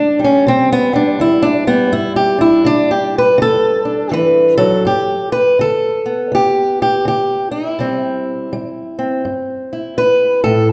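A fingerpicked old ladder-braced acoustic guitar plays solo and up front, its dark, woody, boxy tone and old strings giving this rollicking, gritty swung blues at 82 BPM in G major its character, moving through C, G and D before settling into a second section at 4.8 seconds, all in the wet 1.5-second reverb of a recital hall in a short cut from a longer piece.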